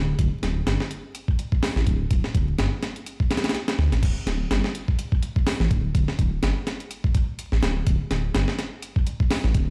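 Energetic and playful, this 125 BPM breakbeat fragment opens with a deep, rumbling detuned saw bass sitting up front from the first second, joined at 0.2 s by gritty, pitched-up, sampler-style drums with a thumpy kick, medium-tuned snare, hi-hat and crash in a small room ambience, before the drop lands at 4.0 s, all heard as if played on a big sound system in a bare stone room with vinyl crackle.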